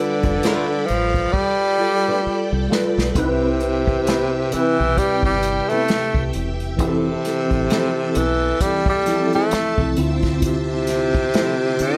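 R&B and neo-soul with a smooth, sensual mood, this short excerpt is led up front by a breathy tenor saxophone with vibrato and scooped notes, given a slapback echo, over a mellow tine electric piano with ensemble chorus and shimmering, vintage string-machine violins holding sustained chords. A round, foam-muted fingered electric bass and an unplugged drum kit played with bundle sticks, with its punchy kick and medium-tuned snare, enter at 0.2 seconds, and the drums play a fill from 1.3 to 3.2 seconds. A thumb-plucked nylon-string guitar with finger squeak sits in the background as a second line, all in a small room with light reverb as the chords move from G9 through Cmaj7 and Fmaj7 to Dm9.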